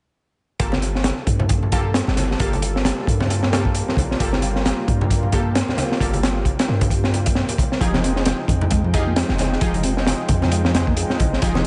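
Breakbeat at 133 BPM with a swung, raw and gritty feel, built on a crunchy, saturated acoustic drum kit with a punchy kick and high-tuned snare up front, a deep, boomy 808-style bass with tube saturation, ringing congas in the background, a lush, warbling detuned pad with chorus and sidechain pumping holding Gm9 and then Fm9, bold orchestra-hit-like sawtooth stabs with tape echo, and a mellow, flute-like tonewheel organ riff through a slow rotary speaker entering at 7.8 seconds, all in a small room with a rolled-off top.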